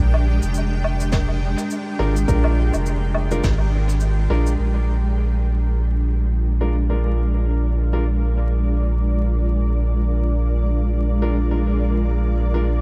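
A loose, swung groove in 4/4 opens this spacious, peaceful ambient dub fragment, with brushed woodblock, shaker and a medium-tuned snare, dulled by low-pass filtering and dub echo, joined by an overdriven electronic kick sitting deep in the background until the percussion drops out at 4.6 seconds. A round, mellow sine sub bass holds the low end up front beneath a cloudy, detuned granular pad whose bright, blurred chords carry their own reverb and analog chorus, and from 4.6 seconds a filter sweep moves through the pad. Short, woody upright piano stabs, boxy and filtered with dub echo, drift in from 2.0 seconds over a Bb7 chord, all set in light reverb with a layer of vinyl crackle.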